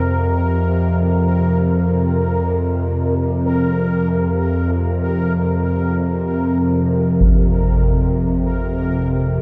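A tense, string-like bowed drone sits up front with vibrato, joined from the start by a quieter, bubbling texture of resonant, randomly stepping filter sweeps with chorus, setting a desolate, ominous dark ambient mood in free time, tuned to A4 = 439 Hz, and at 7.2 s a low-passed concert bass drum with dark cymbals lands close and dry against the vast cathedral reverb of this fragment cut from a longer piece.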